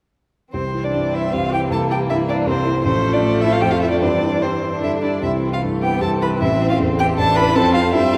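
At 0.5 s a mellow, intimate baby grand piano and a focused, up-front solo violin open this lively, cheerful piano quintet movement, a quick classical-period piece in C major at 155 BPM in 3/4 with a rubato feel, the violin carrying the melody while the piano accompanies with audible action noise and a vintage character. From that same moment a second violin, a cello and a viola sit distant in the background, each a single bowed player with expressive vibrato and portamento: the violin and cello share a rich second line, and the dark viola adds accompaniment. A wet scoring-stage reverb with a 1.9 s decay surrounds the ensemble, and the passage is cut from a longer work, ending at 8.2 s.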